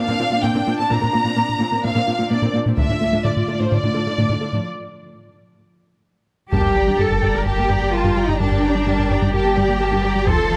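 A close, detailed recording with light reverb opens this brooding, relentless cinematic cue, a hybrid orchestral and electronic film score at 128 BPM in 4/4, where a lush violin section carries the expressive melody over a rich viola section, up-front cellos, a punchy, funky analog bass riff and tine-like, warbling synth pluck arpeggios treated with chorus and tape echo. Distant taiko hits with heavy sticks land at 2.8 seconds, and after a break the music settles into G minor at 6.5 seconds, where a second violin line, a thick, saturated sub bass and a huge, faint sub drop join the taiko impact. It is cut from a longer piece.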